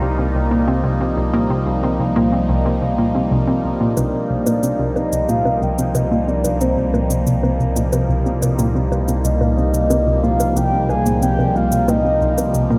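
Drenched in a vast, echoing cathedral reverb, this hypnotic, cosmic piece of sequencer-driven ambient space music in C minor at 91 BPM rests on a single Cm7 chord, with a bright, swirling phased analog pad, a nasal, round analog pluck riff colored by cassette tape and delay, and a fat, saturated analog bass playing from the start, before a dark, full-bodied octave-layered synth lead with vibrato and electronic bongos and cabasa enter at 4.0 seconds.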